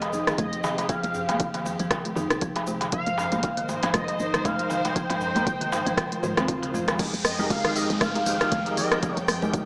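Up-front deep house drums and a punchy electronic kick drive this earthy, hypnotic afro house excerpt, where a smooth sawtooth synth lead with tape echo carries the melody over lush bowed strings, a rosewood marimba arpeggio, a round FM bass, a crisp distant darbuka, bright dry congas and a grainy egg shaker, until an electronic swell and downlifter from 6.2 s leads into a drop at 7.0 s, where fat, lightly overdriven tonewheel organ stabs with a slow rotary speaker enter.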